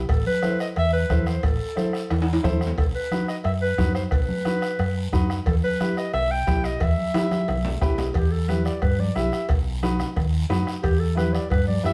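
A close-miked clarinet carries the melody up front in this passionate, driving cumbia excerpt at 179 BPM in E harmonic minor, moving into a solo at 8.2 seconds after a woody upright piano fill with audible action noise. Underneath, a dark, round hollow-body electric bass sits forward while the piano comps intimately, and the percussion weaves together a soft-beater bombo, ringing medium-tuned congas, band-limited vintage cowbell and timbales, and a raspy, dry guiro, with drum fills at 2.1 and 7.1 seconds. The chords pass from Am through B to Em, and a wet studio reverb places the group further back in the room.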